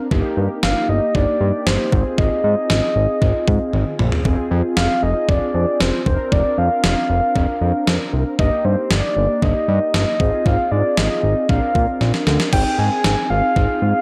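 Melancholic and nocturnal, this synth-pop excerpt sets a soft octave-layered synth lead with a round, vibrato-tinged tone over dark, brassy synth brass carrying chorus and dub echo, a fat, nasal analog bass pushed up front, and a gated 80s digital drum machine with thumpy kick, overdriven gated snare, toms and crash that breaks into fills at 3.7 and 12.0 seconds, set in an echo-heavy mix with moderate plate reverb.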